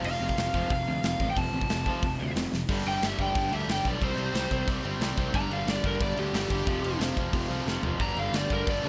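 A straight, driving 4/4 beat powers this energetic, upbeat punk rock clip, cut from a longer piece. A big acoustic drum kit sits up front with a punchy kick, a medium-tuned snare, toms and bright crash and hi-hat cymbals, its sound airy and polished as if in a large room, with fills at 2.5 and around 7.7 seconds. Beneath it, a growly, fuzz-soaked electric bass adds grit. Three picked, overdriven rhythm guitars, one of them double-tracked, churn out the riff together in the background. A warm lead guitar through a small cranked amp plays a high melody from the opening moments, breaking into a solo at 2.7 seconds over chords moving among G5, C5 and F5. The mix carries little reverb, keeping the band dry and immediate.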